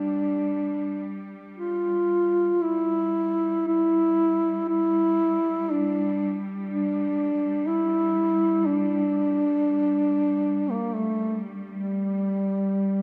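A dark, up-front solo duduk sings a mournful, solemn Caucasian folk lament with vibrato and scooped notes, moving freely in rubato around 59 BPM in 3/4, over a rich, distant bowed cello section that holds a smooth, even drone on G3, all bathed in a long church reverb throughout this 13-second fragment of a longer piece.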